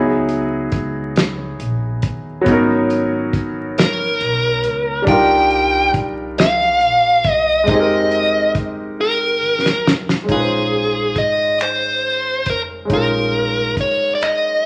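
A clear, intimate grand piano with audible action noise and a woody pizzicato upright bass open this yearning, late-night slow six-eight R&B excerpt in Bb minor at 46 BPM, joined at 0.3 seconds by a damped 70s drum kit with finger snaps, hi-hat, tight kick and fat snare, before a dark, overdriven lead guitar carries the melody from 3.8 seconds over minor eleventh chords, with a drum fill at 9.0 seconds leading into a new section, all set in a large studio reverb with a layer of vinyl crackle.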